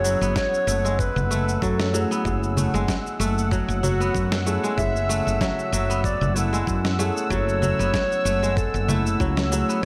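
A loping 95 BPM groove in 4/4 with a light 16th-note swing sets up this earthy, hypnotic piece of organic downtempo in F# minor, resting on a single F#m7 chord through a roughly ten-second cut from a longer piece. Gritty, overdriven electronic cabasa, snare and congas enter at 0.1 s and a thumpy kick at 0.4 s, under a round, woody fretless bass sitting up front with sidechain pumping, while a ringing fingerpicked kora spins arpeggios through delay. A mellow clarinet carries the melody with a delay trail above a muffled felt-muted upright piano, soaked in lush chorus, and a smooth, detuned sawtooth pad, all within a moderate hall reverb and bright 1980s-style digital production.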